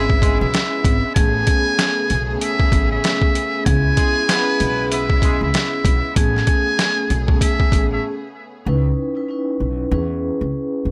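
A dry, tough and gritty cut from a longer boom-bap hip-hop track, where a compressed, pitched-down sampler kit with a thumpy kick sits up front beside a woody pizzicato upright bass, while a buzzy, metal-muted jazz trumpet carries the swung melody over mellow, airy vibraphone with cassette-tape colour, tight horn-section stabs and lush bowed strings in the background, until the drums drop out at 7.9 seconds and the trumpet at 8.0 seconds, with bass and vibraphone carrying on to 10.9 seconds.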